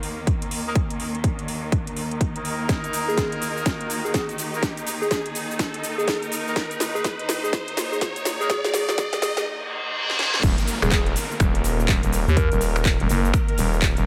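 Swaggering and aggressive, this bass house excerpt builds for 10.4 seconds as pumping, lush strings, brilliant horn stabs steeped in 12-bit sampler grit and dub echo, a round, warbling synth lead in the background, overdriven drums with a punchy kick, cracking snare and metallic hats, and an electronic riser and reverse cymbal climb through a filter sweep and drum fills, until the drop at 10.4 seconds brings in a growling, thick FM bass up front.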